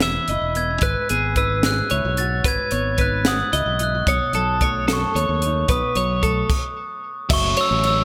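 Math rock and midwest emo in a straight 6/8, bright and wistful, this short excerpt from a longer piece sits in a glossy 1980s-style digital production with a moderate plate reverb. Up front, a glockenspiel struck with soft plastic mallets carries the melody in a high, bell-like, ringing register, close-miked and full, with a digital delay. Beside it, a twangy, compressed twelve-string electric guitar picks clean arpeggios through its own digital delay, while a dark, fingered electric guitar sits in the background with spring reverb until it drops out at 6.5 seconds. A growly, direct fingered bass and a polished, airy fusion kit, with a high-tuned snare, punchy kick, hi-hat, ride and crash under gated reverb, drive the harmony from C#m7/E through G#m7 and B9. At 7.3 seconds a biting, double-tracked overdriven guitar breaks in with a picked riff as the chords move to F#m7.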